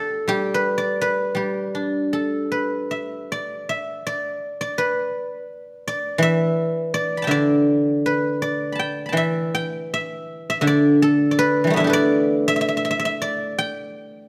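Pastoral and serene, this short cut from a longer Chinese traditional piece features a solo guzheng played with fingerpicks in G gong mode, tuned slightly low at A4 = 437 Hz, moving freely in rubato around 82 BPM in 2/4, its ringing, silvery tone placed up front by close, detailed microphones within a moderate recital-hall reverb as a brief opening phrase gives way at 3.3 seconds to a longer passage running to 14.3 seconds.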